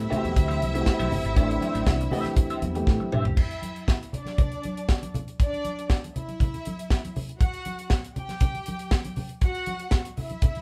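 A straight 4/4 disco groove, sultry and driving, drives this cut from a longer piece. A tight, dry, up-front funk kit with bright cymbals and a high-tuned snare is joined by hard-handed, thin-skinned congas, a lush bowed violin section on a second line, a dark, boxy grand piano, a slightly broken-up, compressed guitar through wah, and a warm fingered bass, all over an Am7 chord. After a drum fill from 2.9 s, the guitar stops at 3.3 s and the piano and bass at 3.4 s, leaving drums, congas and strings to carry on with chords dropped, in the moderate ambience of a band playing live in one room.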